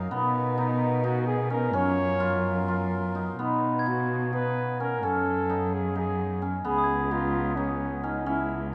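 A moderate recital-hall reverb lends this hopeful, shimmering chamber excerpt in 7/8 (258 BPM in eighths) a gentle bloom. A reedy, close-miked pedal harmonium holds full, breathing chords until 3.4 s, while a mellow hammered cimbalom rings out arpeggios and a veiled, con sordino cello carries the bass with vibrato and portamento. From 0.6 s a breathy, whispered flugelhorn sings an intimate solo melody over chords moving from Cbmaj7 to Db9, and from 3.8 s a bell-like glockenspiel played with soft plastic mallets adds a dark, smooth glint in the background.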